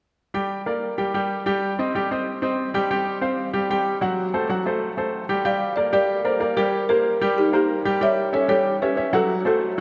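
Driving and fiery, this latin excerpt opens with a bright upright piano carrying the accompaniment, its brilliant, up-front tone showing audible action noise, before a folk marimba played with medium mallets takes the melody at 5.5 seconds with a dry, rustic, woody sound, all set within a vast, echoing cathedral reverb as the chords move from minor harmonies toward a closing rootless D7.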